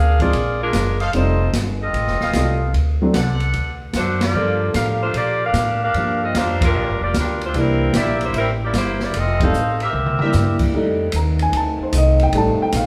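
A swinging 4/4 at 150 BPM drives this joyful, brassy big band excerpt in F mixolydian, where a tight, vintage-toned saxophone section carries the melody over woody, growly pizzicato upright bass, natural grand piano and an open drum kit with dark cymbals and a boomy kick, while a distant, roomy trumpet section adds stabs from 1.0 s, band accents punch at 4.1 and 9.3 seconds, and after a drum fill the piano takes a solo from 10.7 s over sustained trombone chords, all in a large, wet studio reverb.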